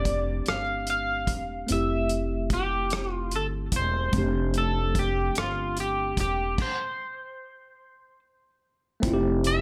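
A slow, swaying six-eight groove sets up this intimate R&B fragment, with a soul drum kit in a small room giving a tight kick, hi-hat, rim clicks and a crash, its top end rolled off and sitting up front. A pizzicato upright bass on gut strings adds a woody, thumpy low end, dark and close. Above it, a worn, slightly out-of-tune tine electric piano comps cleanly and directly through F6/9 and Am7/F harmonies. The melody belongs to a picked electric guitar at the edge of break-up, twangy and a touch gritty, shimmering through analog chorus and placed up front. From 6.6 seconds the band halts for a stop, then returns on an Fmaj7 at 9.0 seconds, all of it wrapped in a light reverb.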